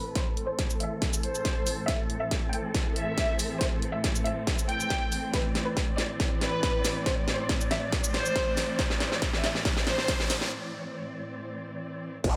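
This heavy wobble dubstep build-up opens with a rich chamber violin section carrying the melody over a dark symphonic string section holding lush sustained chords, both muffled by a low-pass filter that sweeps across the whole passage, with the violins trailing dub echo and the lower strings pumping against the beat. Almost at once a big-room dance drum kit and a punchy electronic kick arrive up front in a half-time feel, the huge snare, hi-hat, shaker and crash cymbal thinned by high-pass filtering as a drum fill drives the tension. From 6.8 seconds a riser and sub drop creep in the background, and the violins fall away just after 10 seconds as the music breaks. In the final instant a growling, saturated wobble bass bursts in up front with overdrive and chorus. The mood is chaotic and menacing, set in light reverb, and the passage is cut from a longer piece.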